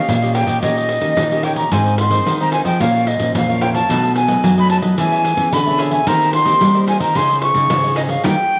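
A breathy, hollow silver concert flute sings the vibrato-laced melody up front in this nostalgic, bittersweet samba and choro excerpt at 110 BPM, over crisp picked cavaquinho, a fingerpicked classical nylon-string guitar with fresh strings, a deep background nylon-string guitar carrying the bass and a jingly pandeiro, all in a moderate echo-chamber reverb before a band accent at 8.2 seconds.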